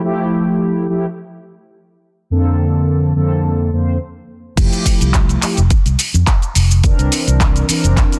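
This nu-disco excerpt is groovy and feel-good, set in a lightly swung 4/4 pulse and cut from a longer piece. It opens on a mellow synth brass part alone: brassy, round and detuned sawtooth tones with ring modulation, a filter sweep, chorus and slapback echo, sitting dark and up front as it sustains lush ninth chords. At 4.6 seconds the drop arrives, as a punchy, layered electronic kick and a bright, amped fingered electric bass with an envelope filter join in. A house drum kit adds cabasa, crash cymbal, finger snaps, handclaps and hi-hat, with its hats, cymbals and percussion softened by low-pass filtering. The sound carries a light digital ambience and a dense, heavily limited modern master, running until 8.2 seconds.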